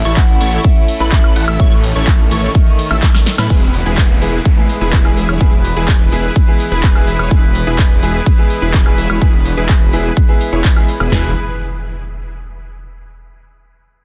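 Festival progressive house at 126 BPM in E major, euphoric and anthemic, this excerpt opens on a drop where a huge, thick supersaw riff with dub echo and a detuned saw bass with tube saturation pump against punchy, layered electronic drums with metallic hats, while a background vibraphone, a catchy plucky unison lead and floating, distant strings add color until a drum fill from 3.0 s and a band accent at 3.4 s bring in a brilliant baby grand piano and a background downlifter and impact at 3.5 s, all pressed into a dense, heavily limited modern master.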